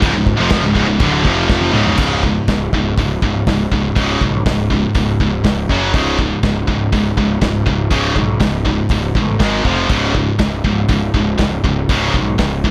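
A bright, high-gain electric guitar sits up front, playing a distorted, picked riff through this epic, heavy metal excerpt at 121 BPM in a straight 4/4, centered on C# major. A second high-gain guitar plays a riff from the background, while a very quiet, double-tracked distorted guitar adds a warm layer to the riff and drops out at 2.0 s. A growly, overdriven fuzz bass, recorded both direct and through an amp, anchors the low end. The acoustic drum kit has a dark, smooth, small-room sound with a tight kick, a medium-tuned snare, hi-hat, crash and toms, and a drum fill from 1.5 to 2.0 s leads into the second section. The power chords move between C#5, F5, F#5 and G#5, and studio reverb gives the mix some space.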